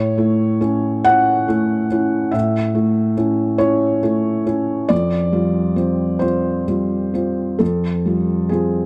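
In a 6/8 metre played rubato, the pulse drifts at roughly 43-48 BPM counted in dotted quarters, giving this short neoclassical minimalist piano fragment an unhurried, breathing feel. A felt-muted upright piano plays solo for the whole 8.9 seconds, its mellow, hushed tone sitting up front and carrying audible action noise that lends it an intimate, vintage character. The harmony rests on A before shifting to Fadd9 at 4.9 seconds, with the part spanning F2 to F#5. The instrument is tuned to A4 = 439 Hz, and close, detailed microphones capture it with only light reverb around it. Cut from a longer piece, the passage feels peaceful and quietly personal.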